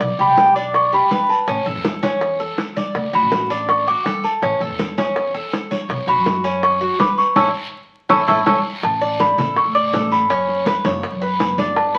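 A straight 4/4 groove at 163 BPM carries this relaxed Cuban son and guajira passage, where a metallic, up-front tres picks arpeggios on its doubled strings over a woody, growly upright bass, ringing congas, tight high-tuned bongos in the background and a raspy guiro, while a delicate, bell-like small celesta melody enters at 0.2 s above chords moving from Bm through A and D. A band accent at 7.4 s and a drum fill at 7.7 s lead into a new section at 8.8 s, and the whole is bathed in moderate studio reverb and the crackle of a very old 78 rpm record.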